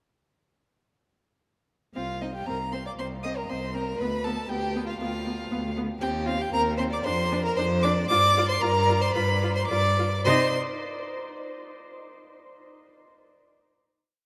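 This quick, restless and dramatic classical-period movement for string quartet in C minor moves at 105-120 BPM in 4/4 with a rubato feel, and it is a whole piece. A clear, focused cello enters at 1.9 s with bass on the beats and sustained low notes. At 2.0 s a rich first violin carries the up-front melody with vibrato, a warm, smooth second violin doubles the tune at the octave, and an expressive viola adds repeated notes and sustained chords with portamento. The quartet then settles onto a final C minor chord at 10.2 s that rings out in a vast, echoing cathedral reverb.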